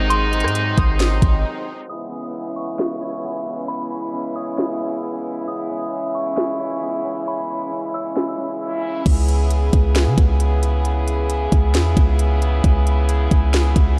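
Atmospheric cloud-rap hip hop in C# minor at 134 BPM with a half-time feel, hazy and melancholic, where a brilliant, metallic, nasal muted French horn section holds pumping chords up front through a dreamy, reverb-soaked mix as a pure FM synth bell with chorus, phaser and tape echo stops at 8.2 seconds and a twangy clean electric guitar picking arpeggios in the background stops at 9.1 seconds, while a trap kit with knocking kick, sharp snare and crisp hats drives underneath and a boomy 808-style bass drops out as a break begins at 1.4 seconds and returns at 9.1 seconds, all in a short cut from a longer piece.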